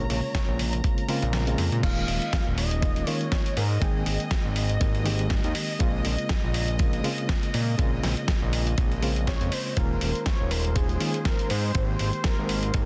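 A thick, detuned unison lead with vibrato opens this sleek, sensual nu-disco excerpt in Bb dorian at 121 BPM with a light 16th-note swing, alongside a barky, overdriven electric piano with fast tremolo, sidechain pumping and analog delay, lush bowed strings in the background, and a fat, up-front sawtooth bass with a filter sweep. A gritty, sampler-style soul kit of snare, hi-hat, ride and crash comes in at 0.1 seconds and a thumpy electronic kick at 0.3 seconds; the kick drops out briefly before the drop at 1.8 seconds, as the chords move through Bbm9, Eb9sus4 and Abmaj9. The lead rests through the middle and returns near the end, all set in a digital ambience with a dense, heavily limited modern master.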